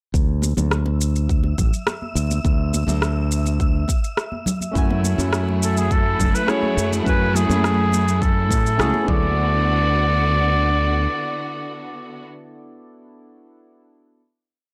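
This short sunset chillout piece opens at 0.1 seconds with a bright, punchy fingered electric bass playing a dub-style line up front, over a deep, soft electronic kick and a light lounge beat of shaker and rim click, all at a relaxed 104 BPM in a straight 4/4 in D lydian. Ringing congas sit close but in the background, and an airy, breathy wind-like noise texture holds a high note with its own reverb. Around 4.8 seconds soft, round electric-piano-like synth keys arrive with chorus and analog delay, playing mellow held chords with syncopated pushes, while a clear, lush string section lays down a sustained pad with a smooth top. A clear flugelhorn with light vibrato and analog delay then carries a free, classical-style solo melody up front, giving the smooth, sunny groove its voice. The beat drops away before a final hit at 9.4 seconds, with the bass, strings and flugelhorn carrying on through it and the keys ringing on last. 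The whole recording has a dry, gritty hardware character with transformer saturation.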